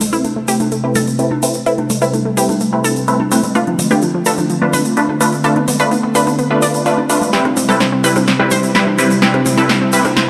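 A straight 4/4 pulse at 127 BPM from a big-room dance drum kit with a punchy snare and metallic hats drives this emotional progressive house build-up in A minor, where a grainy, distant egg shaker, electronic congas and rim click tucked in the background, and a barely audible tight, wave-folded sequencer bass sit beneath a smooth, chorused analog pad, a round, warbling analog pluck arpeggio with tape echo, and an up-front detuned supersaw stab with phaser, as filter sweeps move across the pad, pluck and supersaw over an Amadd9, Bm7b5 and Cmaj7 progression, a drum fill arrives at 7.3 seconds, and a very quiet riser enters at 8.9 seconds.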